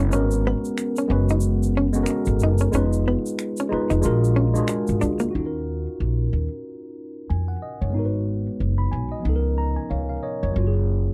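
Soulful and late-night, this short neo-soul and R&B cut sits at 92 BPM in Eb minor with a lightly swung sixteenth-note feel. A worn, slightly out-of-tune tine electric piano with phaser and a woody, thumpy upright bass with gut strings and transformer saturation sit up front throughout, while a dark, clean hollow-body jazz guitar plays a second line and a close egg shaker and finger snaps add quiet percussion until both drop out at 5.3 seconds. The dry, close 1970s-style studio sound leaves room for an electric piano fill at 9.2 seconds as the harmony moves through rich minor-ninth and thirteenth chords.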